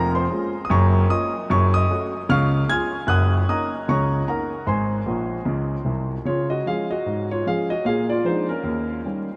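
A warm grand piano opens the recording alone, playing stride jazz with a playful, swinging lilt and a relaxed swing on the eighth notes. The piano covers a broad span from the deep bass up into the high treble, and it sits up front even though the room places the listener further back. A huge, moderate ambient reverb with a long tail surrounds the instrument and lends it a spacious, hall-like bloom. The harmony moves through rich chords such as Gbmaj7 and Gbm before settling on Ab, and a short piano fill at 5.1 seconds leads into a new section at 6.3 seconds. That passage returns to Db and then moves through Bb7 and Eb7 before the excerpt, cut from a longer piece, stops at 9.3 seconds.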